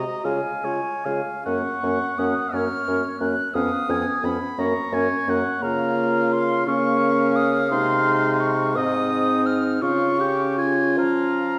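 A slow, lyrical classical movement for wind quintet in 6/8 at 57 BPM with uneven beats and flexible rubato, where an airy, mellow silver flute carries the melody over a light-vibrato oboe second line, a clear, soft-attacked clarinet and a distant, roomy French horn in the accompaniment, and an up-front bassoon on the bass, all heard from further back on a wet scoring stage as the harmony settles from Db through Gb and Ab back to Db in this 11.6-second excerpt.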